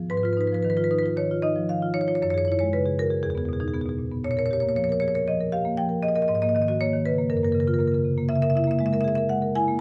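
A solo marimba played with medium hard mallets carries this contemporary classical excerpt, its rosewood bars sounding woody, dark and smooth as it sits up front in close, detailed microphones with light reverb. The mood is hypnotic and flowing, with a rubato feel over a pulse of 118 BPM in 4/4, in G# minor. Across its range from E2 to Ab5, the marimba moves through a harmony that opens on G#m6, passes through F#sus2, Emaj7 and A#m6, reaches G#9sus4 at 6.3 seconds, and closes on F#maj7 and Dbm6. The whole passage, running about 9.8 seconds and cut from a longer piece, stays within a single section.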